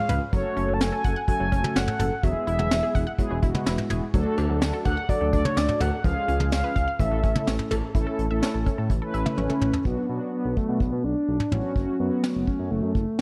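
A mellow, horn-like synth lead with a warbling, full-bodied tone carries the melody over dark, detuned synth brass from the very start of this cool, nocturnal synth-pop piece at 126 BPM in B dorian, joined by a smooth sawtooth-and-triangle synth bass, a lush unison pluck playing arpeggios in the background until 9.8 seconds, and an up-front vintage brush drum kit with a high-tuned snare and punchy kick whose fill leads into a Bm chord at 9.9 seconds, set in light small-room reverb.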